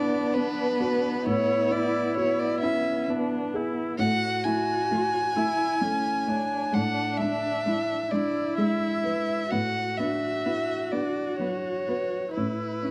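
A dark, intimate studio sound, set in a large room with moderate reverb, frames this short excerpt of neoclassical music for piano and strings in A major. At a slow, rubato 44 beats per minute in 6/8, a solo violin carries the hopeful melody up front, its bowed tone warm and soft in attack, with vibrato, portamento and a plate reverb. A single cello plays a rich second line in a lower range. A viola and a mellow, woody piano with short sustain supply the accompaniment, and all four parts sound from 0.0 to 12.9 s. The harmony rests over an A in the bass, moving through Bm7/A, Amaj13, Amaj7 and E7/A before reaching C#m7/A at 12.4 s, while expressive vibrato and portamento in all three string players lend the passage a tender, personal feel.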